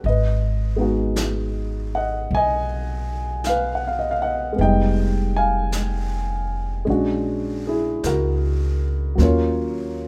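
A slow jazz piece in a swung 4/4, wistful and intimate, cut from a longer piece. A dark, mellow concert grand carries the accompaniment, its deep bass and audible action noise giving a vintage closeness as it sits up front through the changes from Abm7 to Fm7b5, Bb7alt and Ebm9. A pizzicato upright bass on steel strings sounds woody and thumpy, also close to the listener, underpinning the harmony from start to finish. A brushed drum kit with a medium-tuned snare and hi-hat sits far back in the mix, natural and small-roomed. Light reverb wraps the trio, and all three parts play together for the full 10.1 seconds.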